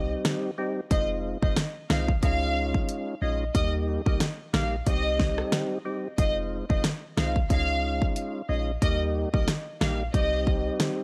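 Dancehall at 91 BPM in C phrygian with a lightly swung 16th feel, this hypnotic, bouncy excerpt sets a lush bowed violin section carrying the melody through analog delay over a dark, lightly overdriven tonewheel organ turning on a slow rotary speaker with key click and percussive third-harmonic accents, a deep, boomy 808-style sine bass, and a punchy, up-front electronic drum kit of kick, fat snare, rim click and hi-hat entering at 0.2 seconds, all cycling Cm, Fm7, Dbadd9 and Eb in a dry, gritty hardware recording touched with digital ambience.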